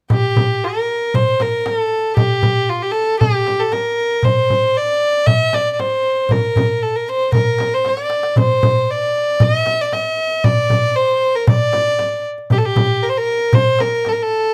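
Arabic maqam ensemble music in D maqam bayati at 116 BPM in a straight 4/4, hypnotic and longing, with a single bowed violin carrying the melody up front in a nasal, reedy gut-string tone with light vibrato and plate reverb, over a close, dry clay-shell darbuka and a small, bright frame drum played with soft hands, all in a moderate studio room, with a drum fill from 7.9 to 8.4 seconds.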